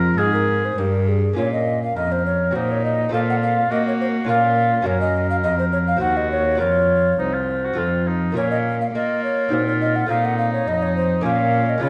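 A baroque-style classical sonata movement with continuo in Bb minor, this short cut from a longer piece moves at 103 BPM in a straight 3/4 with a flowing, introspective mood. A tenor recorder carries the melody with a hollow, airy wooden tone, tongued notes with a touch of chiff, and vibrato. Beneath it, an oboe plays a mellow second line that sits distant and roomy in the mix, colored by light vibrato. A fingerpicked lute with gut double strings, some doubled at the octave, supplies delicate accompaniment, while a single bowed cello anchors the bass up front with a rich, expressive tone, soft attacks, vibrato and portamento. All four parts play throughout the roughly 12 seconds, moving through a harmony that circles Bb minor with diminished chords over the bass and a suspended F resolving home, all set in the lingering reverb of a recital hall.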